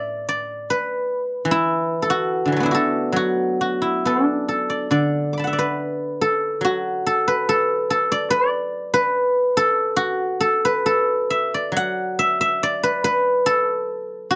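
A dry, close studio sound in a 1970s style puts a solo guzheng up front, its bright, silvery tone ringing clearly as it is plucked with fingerpicks. This flowing, pastoral piece of Chinese traditional music sits in a D gong mode at about 70 BPM in 2/4, though the rubato phrasing keeps the beats uneven. Cut from a longer work, the passage spans A2 to D6 and moves into a new section at 4.9 seconds before ending at 14.4 seconds.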